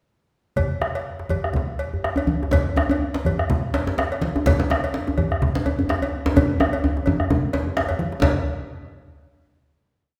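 A wet, reverberant stage sound surrounds this short, festive and powerful West African drum ensemble piece, its swung sixteenths and uneven beats speeding up throughout. A round, vintage bombo plays an evenly spread pattern alongside a tight, cracking djembe and thick-skinned, damped congas sitting in the background, while a metallic, dry cowbell carries its bell pattern; at 2.2 seconds a deep, hard-handed lead djembe enters up front with phrases. A drum fill from 6.4 seconds drives into a final hit at 8.2 seconds.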